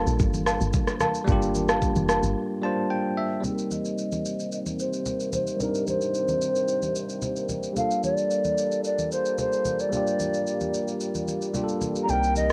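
An amapiano excerpt in C minor at 111 BPM opens on a bell-like tine electric piano, woody marimba stabs with analog delay and a deep, round log drum bass over a cassette-taped deep house kit and bright, close congas, and after the electric piano fills a break from 2.4 to 3.4 seconds, a mellow, distant French horn section and an airy, hollow jazz flute take up soulful, hypnotic chords and melody under a filter sweep, moving from Cm9 to Gm9, with the kick muted from 11.0 seconds and a sine sub bass entering at 12.1 seconds, all in a spring-reverbed home cassette sound.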